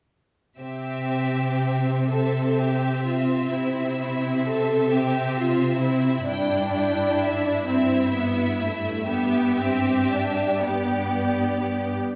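Lyrical and warm, this excerpt from a slow romantic orchestral movement in C major moves at 42 BPM in 6/8, with uneven beats and a flexible rubato pulse. The string sections all enter together at 0.6 s: a first violin section carries the melody high in its register with a smooth, even vibrato tone, while a second violin section sings a focused inner line beneath it. A viola section fills out the accompaniment with a rich, close, bowed sound, and a cello section anchors the bass with soft attacks and an expressive, up-front presence. The harmony rests on C, shifts to C over G at 6.3 s, and settles on G at 9.1 s. The sections blend into a lush ensemble texture, bathed in a wet recital hall reverb that gives the strings a glowing, spacious bloom.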